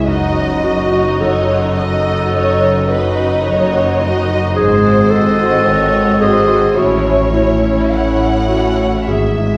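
Heard from further back on a scoring stage with a wet, two-second reverb, this short excerpt from a slow romantic orchestral movement unfolds at 49-55 BPM in 4/4 with a rubato feel, yearning and solemn in mood. A bowed violin section carries the melody with expressive vibrato and a distant, lush tone, while a second violin section adds a rich, focused line, and a solo clarinet in classical style sings a warm second line beneath. The viola section fills in the accompaniment with a smooth, even sound, and a concert harp rings out very quiet fingerpicked arpeggios. Cellos and double basses anchor the bass from 0.1 s, the cellos smooth-topped and the basses clear. The harmony moves from D#dim/F# through G#7b9 to A, and timpani played with medium mallets enter in the background at 9.1 s.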